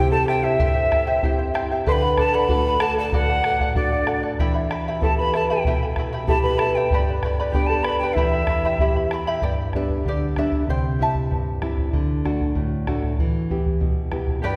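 A straight 2/4 pulse from the deep, close bombo anchors this melancholic, wistful Andean folk excerpt. Dark, fingerpicked nylon-string guitar and shimmering double-strung charango sit beneath a breathy, vibrato-laden cane quena melody and a mellow, thumb-plucked concert harp second line. The quena falls away at 9.1 s, and a charango solo takes the lead from 9.4 s over guitar, bombo and, until 10.8 s, harp, the ensemble framed by the long, resonant reverb of a church or concert hall.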